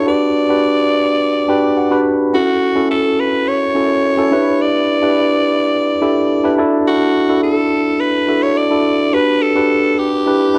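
Nostalgic and dramatic, this pop excerpt at 106 BPM in a straight 4/4 pairs a raspy, gritty alto saxophone carrying the melody, edged with light vibrato and a slapback echo, against a clean tine electric piano heard through built-in speakers. The piano supplies chords moving from Gmaj7 through F#m7, Em7 and Dadd9 back to Gmaj7, with a short fill from 1.2 to 2.3 seconds. Both parts sit up front in a dry, close, 1970s-style small-room recording marked by lossy compression artefacts.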